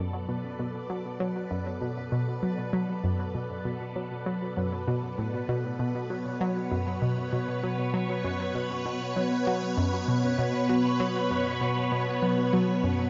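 This hypnotic, mysterious slice of sequencer-driven ambient space music opens on a phased string machine fading in with sustained Bm7 chords, joined at once by an analog pluck riff in the low register between F#2 and F#3. The tempo sits at 98 BPM in a straight 4/4, in B minor, tuned slightly sharp to A4 = 441 Hz. The string machine is swirling, vintage and bright, its slow-attack sawtooth tone dressed in ensemble chorus, phaser and shimmer reverb, and it stays up front alongside the pluck. That pluck has a round, nasal sawtooth character with a noise layer, a fast attack and a short decay, treated with chorus, phaser and tape echo. From 0.1 s a bubbling stepped-filter texture fades in in the background on B4, its resonant sawtooth stepping through random filter changes with a long release, chorus and shimmer reverb. The whole piece floats in a huge, wet ambient reverb with a 7.8 s tail, the highs capped at 7.5 kHz, and this 13.1-second passage is cut from a longer piece.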